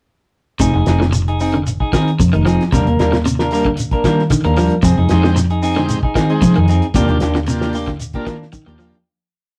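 A straight 4/4 afrobeat groove at 113 BPM in F dorian drives this short, defiant piece, with a cloth-damped, thuddy drum kit giving a fat snare and tight kick under a grainy, mellow shekere while a fingered, foam-muted electric bass sits up front with a syncopated riff. A slightly broken-up electric guitar picks an arpeggiated ostinato through slapback echo as a clean electric guitar adds upper chord stabs over the Fm7 to Ebmaj7 changes. A buzzy combo organ with light vibrato joins at 5.1 seconds with rootless syncopated stabs before the rough rehearsal-room sound fades out from 7.0 seconds.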